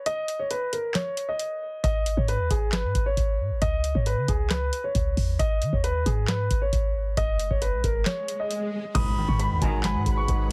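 A dark, low-pass-filtered concert grand piano carries the melody up front in this brooding, hard-hitting half-time trap excerpt, joined almost at once by a booming, dry analog drum machine with a deep kick and metallic hats, then from 1.8 s by a clean, sine-like 808-style bass, until a background swell and impact at 7.8 s leads into a fuller final stretch of very quiet bowed string stabs, a reedy flute with digital delay and a felt-muted upright piano from 9.0 s, and a late ethereal chorused pad, in a heavily compressed, radio-like mix.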